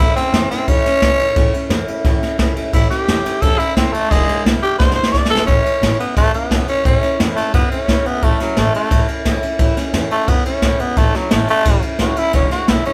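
A band playing live in one room with light reverb gives this rowdy, rollicking rockabilly cut a natural feel, moving at 175 BPM in A major over A and E7 chords. A raspy, growling tenor saxophone with light vibrato carries the melody up front, beside a brushed drum kit with dark cymbals and a punchy kick. A woody upright bass thumps in the background while a bright picked steel-string acoustic guitar shows a hint of finger squeak, and a drum fill at 4.8 seconds leads into the second section at 5.5 seconds.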